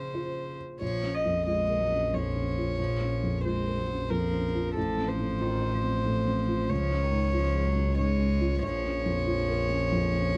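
A single up-front violin, bowed sul tasto with a pure, floating tone, carries a fragile, reflective neoclassical melody in a rubato 3/4 over a felt-muted upright piano whose soft, boxy, intimate sound includes audible action noise, while a rich, distant cello traces a second line in the background and a warm bowed double bass enters at 0.8 s, all in a dry, dark production cut from a longer piece.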